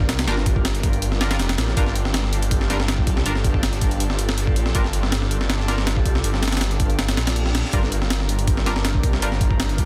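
A gritty, compressed breakbeat kit sits up front in this dark, atmospheric drum and bass and jungle cut, its thumpy kick, high-tuned snare and hi-hat given a touch of studio reverb. Beneath it, a thick, menacing detuned saw bass holds the low end with a saturated, beating tone that is also up front in the mix. In the background, an airy, breathy pad sustains a Gm7 chord, softened by chorus and phaser and roughened with vintage 12-bit sampler grit. A band-passed chord stab, nasal and bright, enters at 0.3 seconds and runs until 9.3 seconds, carrying chorus, the same sampler grit and a dub echo. A reverse cymbal sweeps in briefly at 7.2 seconds, and the whole excerpt is a dense, heavily limited modern master with a dry room sound.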